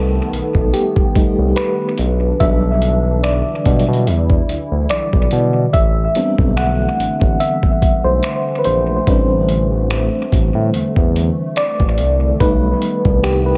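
A slow 72 BPM groove in 4/4, lightly swung on the sixteenths, carries this late-night contemporary R&B excerpt in A dorian, with a dusty sampler-style kit of finger snaps, hi-hat and a thumpy kick arriving at 0.3 s, gritty and overdriven as if re-recorded in a small room. Underneath, a smooth synth bass sits up front, its detuned sawtooth-and-square tone nasal and sustained with a touch of vibrato. The featured voice is an FM electric piano that takes a solo across the whole passage, its fast-attack, decaying notes shimmering with tremolo and a noise layer before trailing into analog delay. Far behind, a hollow, flute-like pad with a slow attack holds mellow chords through an ensemble chorus. The harmony drifts from Baug7 through Em9/B to a long Am11, returning to Baug7 near the end, and the dry, echo-heavy mix, tuned slightly below standard pitch, deepens the longing mood.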